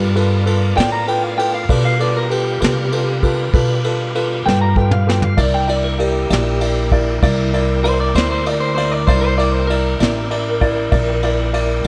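A slow, laid-back yet rollicking 12/8 blues at 65 BPM opens with a slightly broken-up, compressed electric guitar soloing through a small old amp over dark, mellow upright piano, a woody pizzicato upright bass up front, and a background bed of mellow saxophone section chords and smooth tonewheel organ with slow rotary speaker and chorus vibrato, while a vintage brush kit with dark cymbals and a tight kick joins at 0.2 s and plays a fill at 4.5 s before the harmony moves from G9 to C9 at 5.4 s in a dry, close sound.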